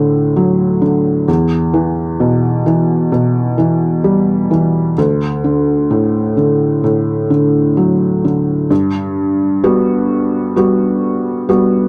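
A felt-muted upright piano plays alone throughout this hopeful, tender folk fragment at a slow 65 BPM in G major, its soft, mellow tone sitting intimately up front with audible action noise, moving through D and E minor before settling on a G major seventh at 8.7 seconds, all captured in a dry, close 1970s-style studio sound with light reverb.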